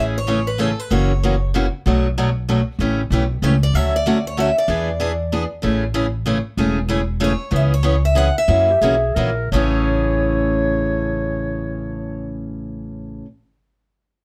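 A swinging 3/4 lilt at 162-191 BPM drives this playful acoustic string swing excerpt in A major, easing into a slowdown from 7.5 to 9.5 seconds before settling back on Amaj7. A bright, boxy picked parlour guitar carries the melody with audible finger squeak, while a second up-front steel-string guitar with fresh strings supplies the accompaniment through changes such as F#7, Bm7, Dmaj7 and E7, over a woody, thumpy pizzicato upright bass on gut strings. From 8.7 to 12.5 seconds a warm, soft-attacked jazz clarinet adds a second line with light vibrato, all set in light reverb.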